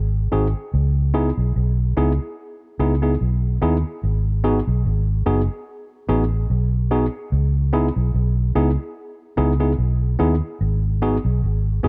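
Lovers rock reggae at a relaxed 73 BPM in 4/4, this short excerpt in C# minor carries a longing, bittersweet mood with a gentle swing on the sixteenths. A vintage muted fingered electric bass sits up front from the very start, its dark, round, foam-muted tone sounding amped and electric as it holds the low end. At 0.3 seconds a tine electric piano joins in the accompaniment, worn and slightly out of tune, lightly overdriven and heard through built-in speakers, giving it a warm character. The harmony moves from G#7 into C#m7, then G#m7 at 4.0 seconds, back to C#m7, and settles on G#m near the close. Light reverb lends a digital ambience to the sound, and both parts carry through to the end of the clip at 11.9 seconds, as it is cut from a longer piece.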